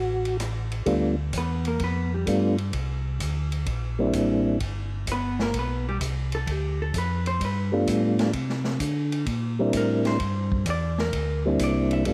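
A swung 4/4 groove drives this greasy, soulful soul jazz organ trio fragment, with an acoustic drum kit (punchy kick, medium-tuned snare, hi-hat, ride and rim click) entering at 0.3 s behind a mellow, round, dark organ bass line that carries key click and a slow rotary speaker. Up front, a soft, flute-like tonewheel organ plays the melody with second-harmonic percussion, chorus vibrato and a slow rotary speaker, while a compressed, picked hollow-body electric guitar takes a solo, sounding briefly at 1.4 s and returning for good at 5.1 s. The harmony moves between G9 and C9 in a dry recording.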